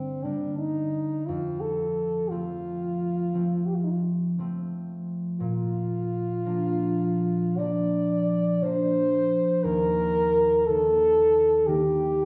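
Heard from well back in a reverberant recital hall with a softened top end, this elegiac, melancholic romantic classical fragment in 12/8 with free rubato sets a mellow, roomy French horn singing the melody with light vibrato over a concert harp's ringing, thumb-plucked accompaniment, the two playing together throughout its 12.3 seconds.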